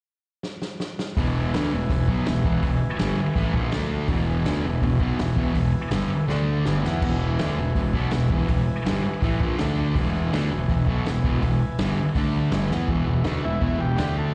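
A straight, driving 4/4 pulse kicks off this rowdy, raw garage rock fragment, with a vintage drum kit of crash, hi-hat, toms, punchy kick and a medium-tuned snare opening alone at 0.4 seconds on a fill, its dark cymbals and rolled-off top sitting in a natural studio-room sound. At 1.2 seconds the band crashes in together: an up-front, double-tracked fuzz guitar pounds out a picked, distorted riff with slapback echo, while a growly, overdriven fingered bass pushes the low end with a bright, amped edge. Behind them a buzzy combo organ holds sustained chords with light vibrato, swinging between E and D5 as further drum fills punctuate the groove. Near the close, a second, mellow combo organ slips in at 13.4 seconds with a short melody in the background, coloured by slapback echo and analog delay. The whole thing has the feel of a live gig heard through the venue's PA and dubbed to cassette, with small-room ambience and a touch of hall reverb.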